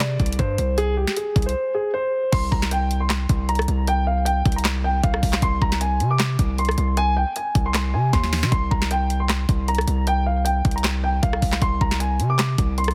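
A dark concert grand piano leads this menacing trap excerpt, carrying the melody between G4 and D6 through a low-pass filter and digital delay, its tone mellow with a deep bottom end. Beneath it, a hard-hitting 808-style bass, punchy and heavy with a sine core, a noise layer and a fast attack that decays, holds down the low register from C2 to C3. A trap drum kit runs throughout at 155 BPM in a half-time feel, with a knocking kick, sharp snare, bright hi-hats, handclaps, rim clicks and a crash cymbal. The harmony moves from a rootless Bb7sus2 over C to a bare C5 at 2.3 seconds, then leaves any chord unstated from 5.4 seconds, and a drum fill at 8.1 seconds marks the passage. The sound is dry and heavily compressed, radio-ready and up front, cut from a longer piece.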